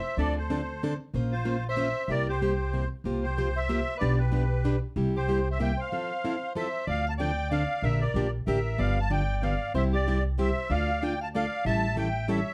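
A reedy, shimmering musette accordion carries the melody from the first moment, shadowed by a close-miked soprano saxophone with vibrato, soft attack and scooped notes, in a swinging, playful acoustic string swing number at 188 BPM in 3/4, cut from a longer piece. A picked, plugged-in jumbo steel-string guitar sits up front with bright accompaniment, while a woody, thumpy pizzicato upright bass on gut strings anchors the low end through changes such as Dm7, C7 and Fmaj7. A break at 5.9 seconds gives way to a new section at 6.9 seconds, all set in a moderate studio ambience with a dark, warm production.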